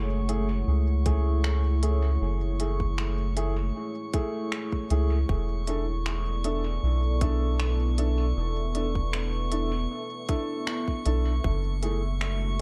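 An echo-heavy digital ambience frames this spacious, deep ambient dub excerpt, where a moody sawtooth pad holds chords from F#m9 to E7sus4 over a round, soft sub bass, a glassy texture of drifting overtones hovers high, a woody, boxy upright piano drops dub-echoed stabs from 0.3 seconds, crisp hats and finger snaps from a small-room drum kit trail into echo, and a tight, tape-toned kick sits up front from 1.1 seconds.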